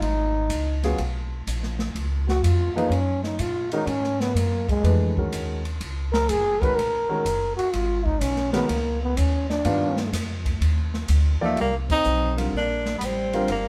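A growling, raspy trombone takes a solo from the start, its scooped notes up front over a woody pizzicato upright bass, a swinging big-band drum kit with a punchy kick and airy cymbals, and a grand piano entering at 0.8 seconds. This is a searching, intense modal jazz excerpt in G# dorian at 125 BPM with a swing feel, moving from a G#9sus4 chord to G7b13 and then Cm11 at 11.6 seconds. A clear tenor saxophone with vibrato takes up the melody from 11.4 seconds, and the band hits an accent at 11.8 seconds, all played live in one room with moderate reverb.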